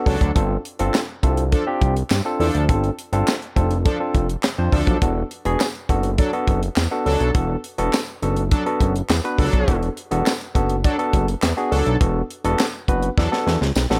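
A barky, lightly overdriven tine electric piano comps through this feel-good, smooth early-eighties boogie funk excerpt, moving from G9sus4 to E9sus4 at 5.0 seconds over a thick, detuned sawtooth bass with filter sweeps and a dry, up-front drum kit with a high-tuned snare, tight kick, hi-hat and handclaps, while nasal, brassy analog synth brass with chorus and vibrato carries a second line, a jingly tambourine sits close, studio reverb gives the room a gloss, and a drum fill closes things out at 13.2 seconds.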